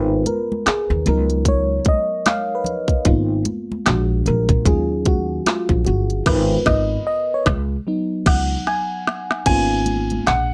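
R&B and neo-soul with a smooth, late-night mood, this swung excerpt features a mellow, round FM electric piano with chorus soloing over thumpy pizzicato upright bass, a tight electronic drum kit with woody snare, handclaps and a fill at 8.7 seconds, and bright, softly played congas in the background, before a polished baby grand piano with slapback echo enters at 9.5 seconds in a dry mix.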